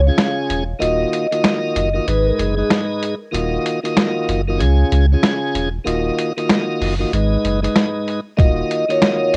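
A ringing, metallic vibraphone with slow motor vibrato opens this gritty, dark boom-bap hip-hop excerpt in Eb minor at 95 BPM, playing a tape-echoed melody over a deep, round sine sub bass. The vibraphone stops at 2.7 seconds and returns at 8.4. Beneath it, a piping, scooped tonewheel organ turns through a slow rotary speaker, and an up-front, compressed, pitched-down sampler-style kit with a thumpy kick and high-tuned snare swings its 16ths over chords moving between Db, Ebmadd9 and Abm, all captured as a home cassette recording with light reverb.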